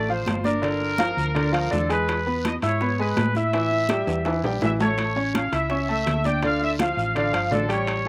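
A driving salsa groove at 166 BPM in straight 4/4 sets a passionate mood in D minor for this short cut from a longer piece. An up-front trumpet section carries the melody with a tight, vibrato-tinged pop style and a slapback echo, while a brilliant concert grand piano, present and deep in the bass, supplies the accompaniment. A dark, punchy hollow-body short-scale electric bass anchors the low end with a round, amped tone. Ringing metal-shell timbales with their own slapback echo lead the percussion, joined by high-tuned congas played with hard hands in the background, very quiet low-tuned bongos, and a raspy guiro. A drum fill from 4.1 to 5.0 seconds marks the turn as the harmony moves from Dm7 and Gm7 through E and A back to Dm. Recorded outdoors, the sound carries little reverb, with a vintage, band-limited edge on the timbales.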